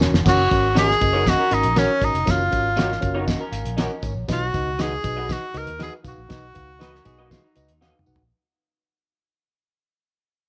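Joyful uptempo 1960s-style soul at 119 BPM in F# major, where a breathy, whispered tenor saxophone carries the melody up front over a mellow tine electric piano, a slightly broken-up lo-fi guitar riff, a second guitar adding chorus-tinged stabs in the background, a round, foam-muted fingered bass, a cloth-damped thuddy drum kit with a fat snare and dark cymbals, a jingly tambourine and a very quiet ringing vibraphone second line that drops out at 3.3 s, moving from F# to B in a small room as the cut fades out, with a drum fill and an electric piano fill at the close.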